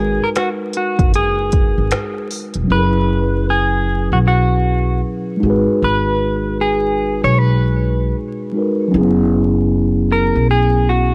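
Swung sixteenths at 77 BPM in 4/4 carry this melancholic, hazy lo-fi hip hop excerpt, tuned to A4 = 436 Hz, where an up-front electronic kit of deep kick, woody snare, smooth hi-hat and finger snaps plays only from 0.4 to 2.7 s, while a thumpy pizzicato upright bass on gut strings, a mellow tine electric piano with cassette-tape colour, and a dark, fingered clean electric guitar melody move through G#m9, F#7sus4 and G#m7 under light reverb and vinyl crackle.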